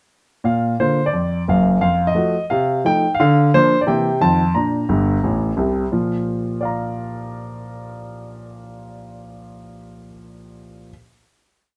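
Jazz stride piano in a playful, swinging 4/4 at 175 BPM in Bb major, carried by a solo grand piano spanning Gb1 up to Bb5 that pairs a single-line melody with a stride bass. The piano sounds warm, present and up front, with long sustain in a moderate studio reverb, as the harmony moves through F7b9, C7 and F7 back home to Bb. A piano fill at 4.9 seconds leads into a final chord at 5.9 seconds that rings until 8.7 seconds, closing this short, complete piece.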